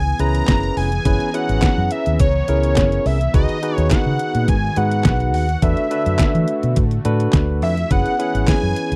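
Danceable and feel-good, this early-eighties boogie funk excerpt opens with a fat, detuned sawtooth lead carrying the melody through chorus, phaser and slapback echo, over a brassy analog pad that sits in the background on sustained suspended ninth chords. A dark, round, foam-muted fingered bass sits up front from the start, and at 0.2 seconds a barky, lightly overdriven tine electric piano and a thumpy, overdriven 8-bit drum machine with handclaps, hi-hat, kick and snare join in. The mix is dry and close, in a 1970s-style studio sound.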